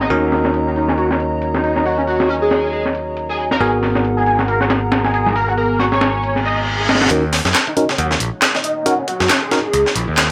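A moderate studio reverb frames this swaggering, raw breakbeat excerpt in Eb minor at 137 BPM with swung sixteenths, where a compressed, pitched-up sampler-style break with a thumpy kick and high-tuned snare sits up front under a growly overdriven picked bass, a moody detuned analog pad pumping from sidechain, a screaming, guitar-like synth riff with phaser, cassette tape color, dub echo and a filter sweep, and gritty 12-bit tine electric piano stabs moving from Ebm7 to Abm9, before a background reverse cymbal and riser arrive at 6.4 s, a build-up begins at 7.1 s with a filter sweep on the electric piano, and layered electronic handclaps join at 7.5 s.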